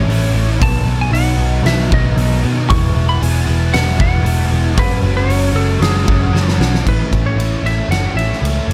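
A blissful, dreamy slice of shoegaze-tinged dream pop rock opens with two guitars and bass sounding together: a bright, clean semi-hollow guitar carries the melody through tape echo, while a double-tracked overdriven guitar picks out a riff beneath it, thickened by analog chorus. The vintage bass is dark, round and foam-muted, sitting up front with an amped, picked tone. At 0.1 seconds a huge arena drum kit arrives with a fat snare, punchy kick, hi-hat, ride and crash, its natural big-room sound placed boldly in the mix. The harmony moves from A to B, then through Eadd9 and F#sus2, giving the steady, straight 4/4 pulse an airy, unresolved glow. A drum fill at 6.3 seconds leads into a new section at 6.9 seconds that lands back on A, and a small room reverb adds space to this brief passage.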